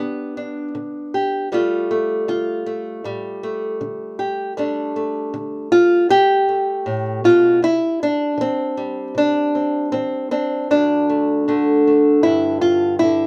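A fingerpicked nylon-string guitar, dark and small in tone yet placed up front, carries this intimate, haunting folk passage alone, moving through G, Dm, Gsus2/D and Cadd9. At 10.7 seconds the harmony shifts to bare D5 and G5 chords as the music moves into a new section. A moderate, large studio reverb surrounds the guitar with a sense of live playing in one room, and the short passage is cut from a longer piece.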